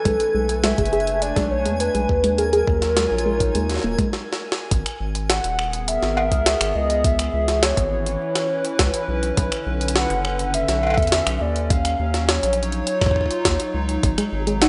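Gritty, pitched-up jungle drums, with a high-tuned snare, hi-hat, cowbell and finger snaps, ride a straight 4/4 groove over a thumpy, tape-toned sampler kick, breaking for a fill at 4.1 seconds in this intricate, glitchy IDM clip cut from a longer piece. A deep, round analog bass anchors a hollow, flute-like pad that carries minor-seventh and ninth chords under a warbling, nostalgic lead with chorus, tremolo and dub echo. A twinkling granular shimmer with sidechain pumping sparkles at the start while soft, dark chorused plucks with delay play arpeggios, and the plucks return at 14.2 seconds, all within a lush hall and a rough, dull-topped demo mix.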